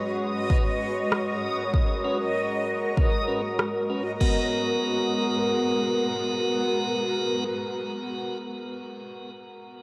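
Ambient dub with a deep, spacious mood, moving at an unhurried pace with a light swing in this short excerpt cut from a longer piece. A granular cloud pad holds sustained chords throughout, its blurred, detuned tone evolving slowly, while a reversed, swelling texture glimmers high above it and stops at 4.2 seconds. A deep house drum kit with a deep, tape-warm kick and a crash cymbal sits up front from 0.5 to 4.4 seconds, backed by an electronic rim click tucked into the background. A tonewheel organ enters at 2.0 seconds with piping, scooped stabs, lightly overdriven with audible key click, a stopped rotary speaker, a low-pass filter and dub echo. The harmony shifts from Bsus2 over G# to G#m9 at 4.2 seconds, and a huge, lingering reverb gives the whole scene a cavernous, dreamlike depth.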